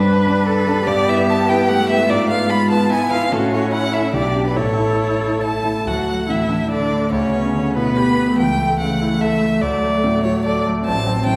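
A clear violin carries the melody up front, smooth and even with vibrato, over a polished concert grand piano with deep bass and a warm, expressive cello and viola using portamento, in this spirited, graceful classical-period movement for piano quartet in D major, a quick 145 BPM in 3/4 with a rubato feel, cut from a longer piece and heard from further back in a wet recital hall.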